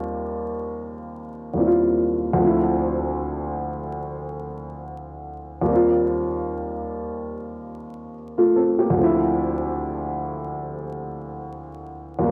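A hazy home cassette recording, with vinyl crackle and a short, wet booth ambience, frames this reflective hip hop fragment in a slow, swung 4/4. A dark, mellow upright piano plays alone throughout, woody and up front, colored by cassette tape and tape echo as it moves between Eb69 and Dm9 chords. At 9.0 seconds the passage shifts into a new section that settles on Dm9 until the fragment ends at 12.3 seconds.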